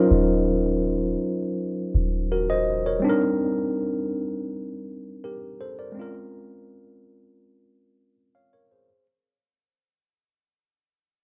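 A straight 4/4 pulse at 82 BPM carries this longing, moody R&B fragment, where a worn, slightly out-of-tune tine electric piano sits up front moving through Ebm9, Cm9 and Bbm9 chords while a deep, round 808-style bass sounds only from 0.1 to 3.0 seconds, all set in a moderate recital-hall reverb with warbly cassette-tape pitch drift as the whole passage fades out.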